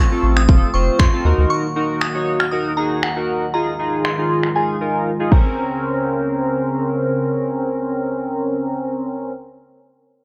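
Driving yet bittersweet, this dance-pop excerpt moves at 118 BPM in a straight 4/4, sitting in Bb minor with tuning a touch under standard at A4 = 437 Hz. A glassy, crystalline FM bell carries the high melody with chorus, phaser and analog delay. Beneath it, a glossy, retro polysynth with a filter sweep plays the accompaniment up front, and a shimmering, detuned pulse-width pad with a sub octave and slow attack holds sustained chords. Both synths pump against the sidechain. A round, deep analog bass with a nasal edge is heard only briefly, ending at 1.5 seconds, while a punchy, tape-warm house kit of kick drum, finger snaps and crash cymbal enters at 0.4 seconds and drops out at 5.4 seconds. The harmony moves from F through Ebm and Fm7 to a Bbmadd9, all in a dry, gritty hardware sound softened by a low-pass filter and a light digital ambience.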